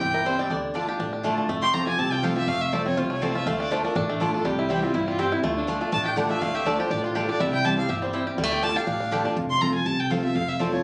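Captured on a phone in the room, this short cut from a longer bluegrass piece has a moderate studio ambience with a club-like reverb around the players. The mood is driving and haunting, with a swung feel in common time and harmony shifting between C, D minor and F. Up front, a single bowed fiddle carries the melody with a dark, woody tone, a smooth top and light vibrato. Beside it, a fingerpicked banjo spins twangy, percussive arpeggios until 9.4 seconds, while a picked dreadnought guitar with fresh strings supplies warm accompaniment and a pizzicato upright bass thumps out a deep, woody low end. A mellow, round mandolin adds double-string stabs from 0.3 seconds, and a slide resonator guitar played lap-style with fingerpicks contributes a brief metallic, nasal second line that ends at 1.0 seconds.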